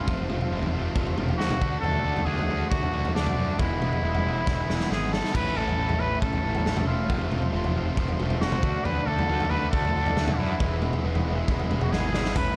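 A straight 4/4 beat at 137 BPM from an up-front raw garage drum kit with a punchy kick and fills at 4.5 and 11.9 seconds drives this carefree, jangly indie rock passage, where a clear, vintage-toned trumpet with light vibrato and analog delay carries the melody over background riffs from an overdriven cranked stack guitar and a compressed fuzz guitar with chorus and delay, a fuzzy overdriven picked bass, and, from 5.3 seconds, a very quiet, airy detuned sawtooth pad, set in light reverb over an F, D, E, A progression.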